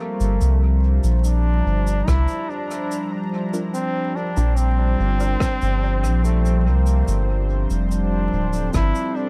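A slow, straight 4/4 pulse at 72 BPM is set by an airy shaker and rim click played with brushes, carrying dub echo, while a deep, tape-toned electronic kick drum joins in the background at 2.1 seconds. This is a deep, meditative piece of ambient dub, heard as a short cut from a longer work. A round, soft sub bass sits up front beneath a smooth, mellow analog pad whose detuned sawtooth chords bloom slowly under chorus, moving from C9sus4 to G9sus4 at 7.1 seconds. Over this, a bright solo trombone sings the melody in a classical style with light vibrato, its phrases trailing into dub echo. A muted, very quiet filtered chord stab with a plucky, decaying attack surfaces briefly from 3.5 seconds. The mix is echo-heavy, set in a small room ambience with a layer of vinyl crackle.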